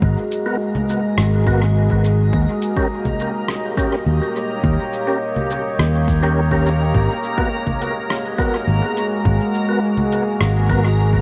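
A punchy, up-front fingered electric bass anchors this deep, hazy ambient dub excerpt at 104 BPM, moving from G#m7 to D#7 and back beneath a moody detuned sawtooth pad with chorus, an overdriven electronic kick re-recorded in a large room, muffled pitched-down shaker, congas and rim click with dub echo from 0.3 seconds, round percussive tonewheel organ stabs with key click, fast rotary speaker and dub echo, and a reversed granular swelling texture, all soaked in a huge dreamy reverb.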